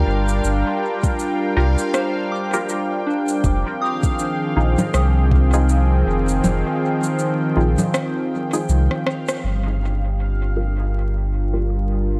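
A light reverb and a bed of vinyl crackle give this ambient dub excerpt a deep, spacious feel, moving at 80 BPM in 4/4 with a swung sixteenth-note lilt. A smooth, detuned sawtooth pad holds sustained chords up front with chorus, moving from Gm7 to Fm7 at 3.4 seconds and back to Gm7 at 9.4 seconds, while a round, mellow sine sub bass with tube saturation sits beneath it throughout. High in the background, a bright, resonant texture bubbles through random filter steps, bathed in its own reverb and chorus. An overdriven electronic shaker, rim click and congas run with dub echo and studio reverb from 0.3 to 9.4 seconds, joined by a soft, overdriven electronic kick that drops out at 5.5 seconds ahead of a break, a short drum fill and a band accent around 9.3 seconds. Dark, muted chord stabs with a filter pluck, phaser and dub echo recur in the distance, and a gentle, warbling FM bell traces arpeggios with chorus and echo until about 9.5 seconds.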